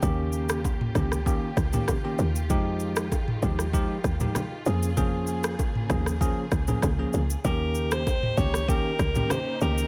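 A breathy, edgy alto saxophone steps forward at 7.5 seconds with a short pop-style solo line, its scooped notes sitting up front and trailed by delay. This joyful, romantic afrobeats excerpt moves at 97 BPM in a straight 4/4, centred on Eb mixolydian with chords shifting from Eb7 through Fm9 and Bbm7 before returning to Eb7. An up-front electronic afro-pop drum kit with a deep kick, rim click, shaker and toms drives the groove, while a punchy, woody log drum bass with a fast, decaying attack anchors the low end. A bright, bell-like tine electric piano plays clean, direct accompaniment, and a dark, lush studio string section sustains bowed chords with vibrato beneath it. Very quiet congas and bongos played with soft hands add acoustic sparkle, all set in a small room reverb.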